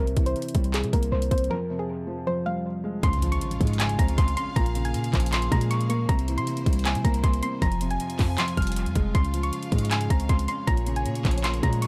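A dry, echo-heavy mix opens this dark, melancholic trap excerpt at 157 BPM in a half-time feel, where a soft, round pluck carries the melody through chorus and dub echo over a mellow concert grand piano with audible action noise and a deep, boomy 808-style bass. Up front, an electronic trap kit of hard-clipped kick, metallic hi-hats and handclaps drives things along, with a brief break from 1.5 seconds. At 3.0 seconds a very quiet electronic impact hits as a distant, lush string section enters with vibrato-laden sustained chords, cycling through C7, Fmadd9, Dbmaj7 and Bbm7 in F harmonic minor.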